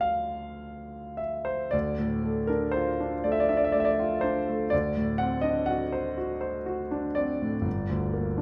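A solo concert grand piano opens on a D minor chord in this mournful, melancholic romantic nocturne, moving in a slow, rubato 12/8 at around 34-42 BPM in dotted quarters. The piano sounds smooth and vintage, with a deep bass and an up-front presence, ranging from G1 to F#5 inside a moderate recital hall reverb. The harmony turns to D7 at 4.7 seconds and arrives on G minor at 7.7 seconds before this fragment of a longer piece ends.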